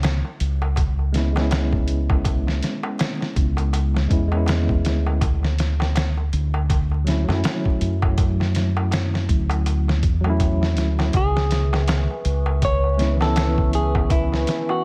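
Dark and cinematic, this trip hop excerpt opens on a round, punchy fingered dub bass with tube saturation and a gritty, pitched-down sampler drum kit with a thumpy kick, alongside a crisp metal-shell darbuka and a bed of vinyl crackle. A worn, slightly out-of-tune tine electric piano enters at 1.1 seconds, lightly overdriven with tremolo and tape echo, over chords moving from C#m7 to Dmaj7 and back. At 11.1 seconds a nostalgic, warbling tape-like pad arrives with chorus, and a clean semi-hollow electric guitar follows with a dub-echoed melody.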